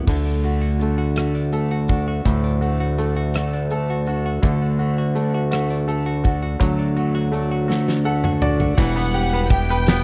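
An aching, melancholic pop ballad in 6/8 moves at a slow 55 BPM, cut from a longer piece and built on a glossy, nasal synth bass with chorus and a filter pluck, a huge arena drum kit with a fat snare and punchy kick, a brilliant grand piano with short sustain, and a clean, direct-recorded electric guitar playing arpeggios through harmonic tremolo. Drums and piano share a fill from 7.7 seconds leading into 8.8 seconds, when the harmony shifts from D to Emadd9 and a lush, bowed violin section with smooth vibrato enters. The sound is a dry, close 1970s-style studio recording with bass and drums up front.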